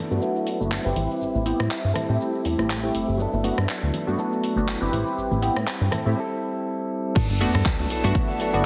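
Funky and sunny, this short cut of filtered disco house runs at 121 BPM in G major with a light 16th-note swing, cycling through Gmaj9 and Am9 chords under a filter sweep that runs for the first 7.2 seconds. A punchy, funky polysynth comp and a dark, plucky analog bass with a moving notch carry the groove, both breathing with sidechain pumping, while a bright, scooped clean electric guitar plays a picked riff from the start. Behind them, a swirling, warbling string machine holds phased, chorused chords in the background, and a tape-warm house kit adds handclaps, hi-hat, rim click, cabasa and crash. Close, dry congas and tube shaker sit in the background until 6.1 seconds, just as a brief break arrives at 6.2 seconds. At 7.2 seconds the drop lands with a punchy, up-front electronic kick, a sub drop and an impact, all framed by light digital ambience and a heavily compressed, radio-like sound.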